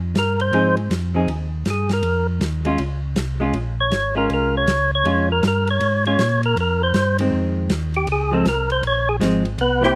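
Smoky and late-night, this swung soul jazz organ trio at 159 BPM opens on a mellow, round tonewheel organ bass line with key click through a slow rotary speaker, joined at 0.2 seconds by a fat, percussive organ solo carrying third harmonic percussion, light overdrive and slapback echo, a dark, smooth acoustic drum kit on hi-hat, ride and snare, and from 0.5 seconds a clean, fingered hollow-body guitar with its own slapback echo comping over Fm7, Bbm7 and Dbmaj7 in a dry, roomless sound.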